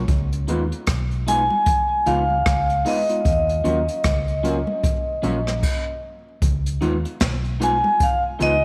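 A light reverb gives this short lovers rock reggae excerpt a soft, intimate sound, tuned to A4 = 444 Hz and moving at an easy 76 BPM in 4/4 with a gentle swing on the 16ths, its mood longing and bittersweet. Up front, a jazz kit played with brushes pairs dark cymbals and a medium-tuned snare with a boomy kick. A vintage foam-muted fingered bass sits beside it with a round, amped tone. A worn, slightly out-of-tune tine electric piano plays mellow accompaniment through its built-in speakers. A slightly broken-up, twangy guitar adds picked stabs with subtle chorus, while very quiet congas with a thin, damped skin add a bright touch. The vibraphone enters with the melody at 1.3 seconds, metallic and ringing with slow motor vibrato and tape echo, and it is the loudest part; the harmony moves from Db9 to Ebm7 before a stop at 5.6 seconds, after which the opening section returns on Db9.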